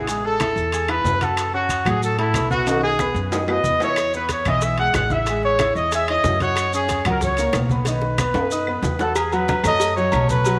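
A jazz-style trumpet section, up front and warm, carries the melody over clear grand piano and a dark, thumpy pizzicato upright bass with gut strings in this danceable, festive salsa cut from a longer piece. Low-tuned congas sit in the background alongside ringing, saturated timbales and agogo bells, grainy maracas and very quiet woody claves. Tight, high-tuned bongos and cowbell join at 4.0 s, drum fills arrive at 2.7 and 7.9 s, and a wet echo-chamber reverb lends the whole groove a roomy sheen.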